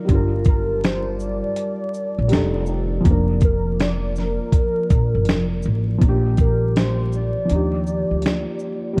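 A gritty, compressed sampler-style drum kit sits up front in this dreamy, nostalgic lo-fi hip hop excerpt at 81 BPM in Bb major, swung on the sixteenths, with a thumpy kick, fat snare, finger snaps, hi-hat and shaker beside a woody pizzicato upright bass. A velvety, detuned synth lead with portamento carries the melody over a soft, felt-muted upright piano, while a warbling tape-like pad hangs in the background with chorus and its own reverb. The harmony moves from Gm7 through F13 and Bb/F, then shifts at 6.0 s to Bb6 and Ebmaj9, framed by a dark production with vinyl crackle and light reverb.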